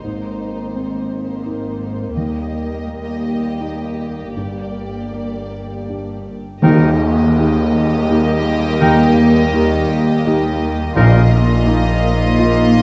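A longing, sorrowful cinematic film score for orchestra opens with a full string body in a slow, rubato triple metre. Floating sul tasto violins carry the melody over a distant second violin line, a very quiet, woody viola section, and warm, pure cellos and double basses. A warm concert grand piano with short sustain plays accompaniment in the background as a mellow French horn section holds sustained chords. At 6.6 s the harmony settles, and an accent arrives with a very quiet, dark tam-tam, hard-mallet timpani on calf heads, and woodwind lines from an airy flute section, a clear solo oboe and a bright, vintage-toned clarinet. The timpani returns at 11.0 s on a suspended chord. The passage sits in a moderate scoring-stage reverb, and the whole recording carries the worn, warbling pitch drift of old cassette tape.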